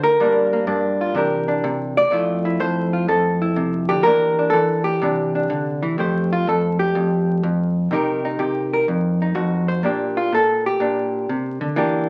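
Solo jazz in a relaxed, warm mood, swinging at 124 BPM in 4/4, with a lone hollow-body electric jazz guitar sitting up front for the whole 12.1-second cut from a longer piece, its dark, clean, picked and compressed tone moving through changes such as Gm7, C9 and Fmaj7 before settling into F major at 6.0 seconds for a solo over Fadd9, Cm7 and Bb6, all bathed in a large studio reverb and the crackle of a very old 78 rpm record.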